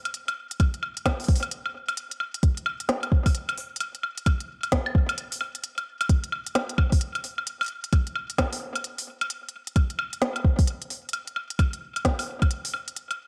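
Lightly reverberant, echo-heavy digital ambience frames this glitchy, intricate IDM fragment at 131 BPM in 4/4, swung at 62% on the sixteenths. An up-front organic electronic drum kit of crisp hi-hats, woody snare and woodblock runs from 0.1 seconds, soaked in studio reverb and tape echo. A soft, produced electronic kick joins at 0.6 seconds and sits just as close, carrying its own studio reverb.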